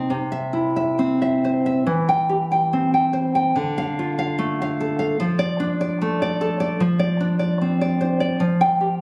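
Captured on a phone in the room, the recording carries a moderate hall reverb and some lossy compression artefacts, with the guitar sitting up front. A passionate, melancholic romantic piece for solo nylon-string classical guitar unfolds in C major at a rubato 64-76 BPM in 2/4, the full-bodied, fingerpicked tone reaching from C3 up to G5, with audible finger squeak. Cut from a longer work, the passage moves from C through C/E and Dm shapes to Dm7/F, arriving on G7 over F at 8.4 seconds.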